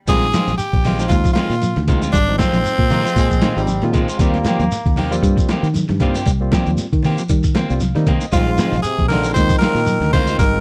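A dry, close studio sound in a 1970s style frames this short cut from a driving, funky afrobeat groove with a swung sixteenth-note feel. A raspy, edgy tenor saxophone sits up front with vibrato and scooped notes, carrying the melody at the start and returning at 8.3 s, when a clear trombone joins on a second line. Earlier, a brilliant bass trombone adds its own second line from 2.9 s. Underneath, a compressed, sampler-style boom bap kit with a thumpy kick and tape-warm grit drives the beat alongside a foam-muted fingered electric bass, while bright, damped congas and a grainy, mellow shekere sit low in the mix. Two electric guitars fill the middle: a dark, clean one playing very quiet picked arpeggios, and a slightly broken-up one playing stabs with a vibrato effect. A barky, lightly overdriven tine electric piano comps in the background through a combo amp and takes a short fill just before the horns return, over harmony that moves from Bb9sus4 to Eb6 and back.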